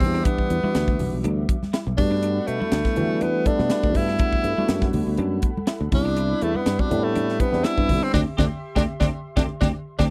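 A dry, close recording in a 1970s studio style captures this cut from a longer piece of electric jazz fusion, soaring and funky at 122 BPM in a straight 4/4, centred on D mixolydian with tuning set at A4 = 445 Hz. Up front, a forceful tenor saxophone carries the melody with jazz-style vibrato, while a polished drum kit with a high-tuned snare and punchy kick drives the groove and thin-skinned congas sit further back. A growly fretless bass, treated with lush chorus, anchors the low end. A clean tine electric piano accompanies in the background alongside a brassy, detuned sawtooth pad with a soft attack and a filter swell. A twangy, compressed guitar adds picked stabs from 0.1 s with an ensemble chorus, as the harmony moves through Em7, Gmaj9 and Cmaj9 to D9sus4, where the band hits an accent at 8.1 s, the electric piano plays a fill and the drums close with a fill at 9.6 s.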